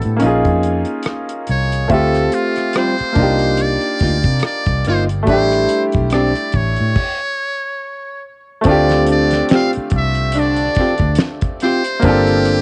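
A buzzy, thin trumpet with a metal mute carries the melody with scooped notes and light vibrato over a bright baby grand piano whose action noise is audible, a dry 70s drum kit with a fat snare and tight kick, and a round, punchy foam-muted electric bass, setting a smooth, soulful neo-soul groove at 71 BPM in D minor, with swung 16ths and lush minor-eleventh chords. A clean hollow-body archtop guitar adds a second line from 2.8 seconds, the band drops into a stop at 7.0 seconds, and a mellow jazz-style horn section with octave doubling punctuates the following section with stabs. The cut from a longer piece has the hazy feel of a cassette home recording with light small-room reverb.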